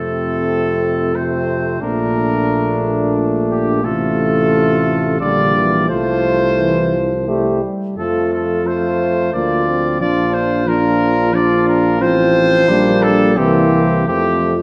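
A classical brass quintet piece in F major, heroic and grave in mood, moving in a rubato 3/4 at 89 BPM through a recital hall's wet reverb. A clear, distant trumpet carries the melody up front while a second trumpet with a soft attack adds a gentle inner line, and a French horn and a trombone with light vibrato sit in the background as accompaniment. Beneath them, a mellow bass trombone, also with light vibrato, anchors the bass as the harmony passes through Bbmaj7 and Gm7/Bb before closing on C7 to F near 14.1 seconds in this cut from a longer piece.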